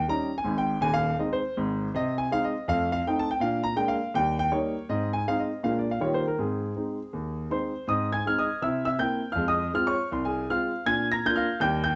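A solo grand piano opens this swinging, playful stride jazz cut, its warm, boxy tone sitting up front in a moderate club reverb. At 161 BPM in 4/4 with a light swing on the eighth notes, the piano roams from deep bass notes to bright highs in Ab major, moving through chords such as F7, Bb7 and Eb7 before turning to C7 and Fm after 7.9 seconds. The 12-second passage is lifted from a longer performance.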